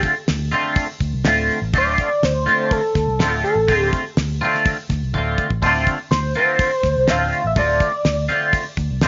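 A twangy, clean electric guitar riff opens this mysterious, hypnotic slice of psychedelic rock, double-tracked and swirling through a rotary speaker, joined at once by a dry, damped 70s drum kit with a fat snare and tight kick, plus a very quiet, grainy tube shaker. A round, dark fingered bass slips in at 0.3 seconds, sitting low beneath the guitar and the up-front drums on a single Dm7 harmony in straight 4/4. At 1.8 seconds an overdriven synth lead takes the melody, a gritty, screaming, guitar-like voice with sawtooth bite, vibrato, chorus and a slapback echo. The drums break into a brief fill around 5.1 seconds, and the lead sings on until 8.5 seconds while the rest of the band carries through to the end. A light reverb and small-room ambience keep the sound close, its top end rolled off for a dusky, vintage cast, in this short piece cut from a longer performance.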